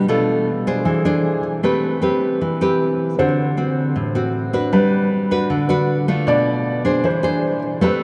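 A straight 4/4 bossa nova pulse at 155 BPM carries this wistful, melancholic fragment, cut from a longer piece, in a vast, echoing space soaked in wet cathedral reverb with a 6.2-second decay. The nylon-string guitar sits up front as the accompaniment, its fingerpicked sound full-bodied and deep in a classical vein, with finger squeak audible as it moves through its low-to-middle range. Behind it, a felt-muted upright piano plays a second line in a narrow middle register, sounding soft, dark and boxy, with the action noise of its keys close and intimate. The harmony moves from Bm7b5 and Eaug7 into Am9, D6 and Gmaj7, then returns to Bm7b5 and Eaug7 near the end. Both instruments play together from 0.0 to 8.0 seconds, the guitar clearly leading the balance while the muffled piano lingers beneath it.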